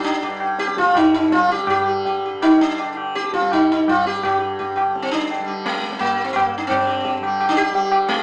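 Hindustani classical music in raga Bhairavi on G, longing and solemn, moves in a seven-beat cycle at 168 BPM and speeds up across this 8.2-second cut from a longer piece. An up-front sitar carries the melody with a round, buzzing tone and shimmering sympathetic strings, over a softly plucked, bright tanpura drone, while low-tuned tabla with a short ring and a vintage, band-limited character enters at 0.2 seconds. The group sounds as if playing live in one room with moderate studio reverb and a small-speaker quality, shifting into a new section at 6.7 seconds.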